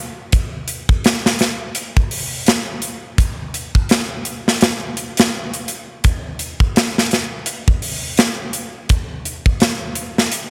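Vinyl crackle opens this smoky, hypnotic trip hop excerpt before the drums enter at 0.3 seconds. Set at 84 BPM in 4/4 with a 59% swing on the sixteenths, the groove carries a lazy, head-nodding lilt. The acoustic kit of hi-hat, kick and snare sits up front, its polished, airy sound captured in a big room with a tight kick and a medium-tuned snare. A light reverb and the steady vinyl surface noise give the recording a dusty, late-night haze. The drums carry the single section through to the cut at 10.5 seconds.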